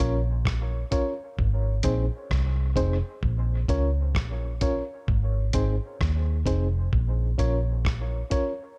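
Meditative and deep, this dub reggae excerpt sways on a lightly swung groove. A dark, round, foam-muted electric bass sits up front with punchy weight beside a muffled, compressed sampler-style kit of thumpy kick, hi-hat and rim click that sounds re-recorded in a large room. Reedy electric piano stabs, softer in the balance and heard through built-in speakers, carry fast tremolo, a high-pass filter and dub echo, set within light reverb and an echo-heavy mix.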